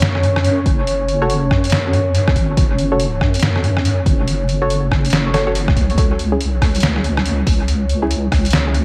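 Brooding and dark, this deep dubstep excerpt moves at 141 BPM in a swung half-time feel, built on an F#5 chord that gives way to chordless territory at 6.0 seconds. A saturated, detuned wobble bass sits up front beneath a moody sawtooth pad with a slow attack, while a gritty, pitched-down sampler-style kit of hi-hat, rim click and snare carries dub echo, joined at 0.7 seconds by a layered electronic kick. From 1.2 seconds, muted, filter-plucked chord stabs with chorus and dub echo drift through an echo-heavy mix with light digital reverb and vinyl crackle.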